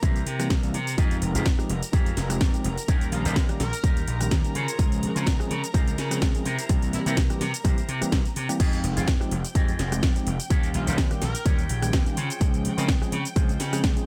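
A punchy, tape-warm electronic kick sits up front at 126 BPM in 4/4, with a 16th-note swing of 55% giving this filtered disco house groove in F minor a sensual, loose strut. A layered house kit adds a cracking snare, metallic hi-hats, cabasa, rim click and crash cymbal in a small room, its hats, percussion and cymbals pumping against the kick, while a bright, overdriven slap bass drives the low end from F1 to Db3. An overdriven tine electric piano, played through a combo amp with phaser and 12-bit sampler grit, carries the accompaniment, and a dark, clean, picked guitar riff through an envelope filter sits in the background with the same lo-fi grit. Behind them, a dark, woody string section bows lush sustained chords sul tasto with vibrato, both parts pumping with the sidechain. A brilliant pop-style horn section adds short melodic phrases with delay, first at 3.1 s, over a cycle of C7, Fm9, Eb7 and Dbmaj7, all inside a digital ambience in this excerpt cut from a longer piece.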